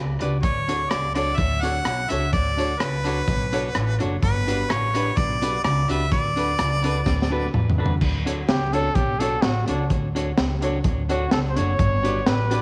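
Joyful and cheerful, this ska excerpt moves at 127 BPM in D major, built on a woody, pizzicato upright bass with tube saturation and a gritty, saturated breakbeat kit with a tight kick, high-tuned snare and dark cymbals, sitting up front with tape echo. A clean picked electric guitar with tape echo and a worn, slightly detuned upright piano with audible action noise add stabs and accompaniment in the background over Dmaj7, Gmaj7 and D6 chords. A clear harmonica with scooped notes carries the melody until 7.5 seconds, and after a drum fill a trumpet with vibrato takes a solo from 8.5 seconds, all under light reverb and vinyl crackle.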